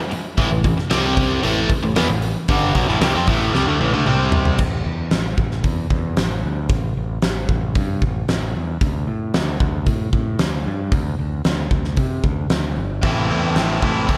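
Classic rock in A minor at 114 BPM, swaggering and brooding, where a bright, cranked stack guitar with slapback echo and an up-front, hollow-bodied semi-hollow guitar with phaser and slapback echo play overdriven picked riffs from 0.1 to 4.6 seconds, drop out, and return at 13.0 seconds, while a growling, overdriven fingered bass and a dark, smooth big-room drum kit with a fat snare and punchy kick drive the whole stretch, marked by a drum fill at 3.5 seconds, all in a lush hall reverb that gives a big arena sound to this cut from a longer piece.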